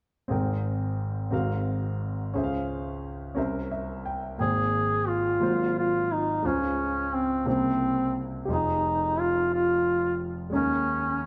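Uplifting and jubilant, this slow gospel piece in 6/8 at 59 BPM and in Ab major opens with a clear, intimate grand piano playing rich chords with its action noise audible, and a short piano fill at 3.4 seconds leads into the duduk's entrance at 4.4 seconds. The duduk carries a folk-style solo melody with vibrato, roomy and slightly distant yet still up front, over a progression that moves through Abmaj9, Dbmaj7, C7b9 and Fm9 before settling on Eb7sus4. A wet recital hall reverb and a dark, warm production frame this excerpt, which is cut from a longer piece.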